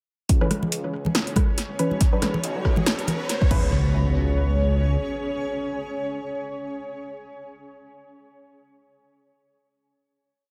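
Heavy and cavernous, this short deep dubstep piece in C# minor moves at 140 BPM with a swung half-time feel, opening at 0.3 seconds with an overdriven, up-front electronic kick, a punchy snare with metallic hats, rim and crash from the deep house drum kit, and a rumbling detuned saw bass in chopped phrases. Echoing congas struck with hard hands join at 0.5 seconds, while muted, gritty dub chord stabs drift through tape echo and a blurred granular cloud pad with a riser and impact carries the build into a final hit at 3.7 seconds in an echo-heavy mix.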